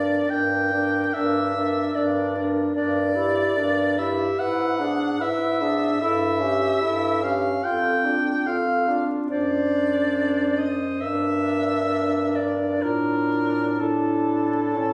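A clear soprano saxophone sings the melody up front with vibrato and a soft attack in this elegiac, melancholic classical fragment for single-reed quartet, a 14.9-second cut from a longer piece in D minor, played rubato in 4/4 at around 61-76 BPM. Alongside it, a warm clarinet carries a gently articulated second line, while a mellow tenor saxophone with vibrato supplies accompaniment and a bass clarinet anchors the low end, both sounding distant and roomy. The harmony moves from Gm through darker chromatic colours back to Dm/A, set in a moderate recital-hall reverb with a phone-in-the-room quality, added studio reverb and vinyl crackle.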